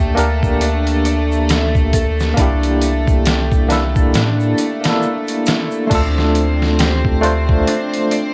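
A barky, overdriven tine electric piano with tremolo and tape echo opens this dark, smoky trip hop excerpt alongside floating, distant violins, a ringing harp arpeggiating through tape echo and a deep, round dub sub bass, before a gritty, pitched-down sampler-style drum kit with a thumpy kick and a tube shaker in the background arrives at 0.2 s, the kick dropping out from 4.1 to 5.9 s, all under vinyl crackle.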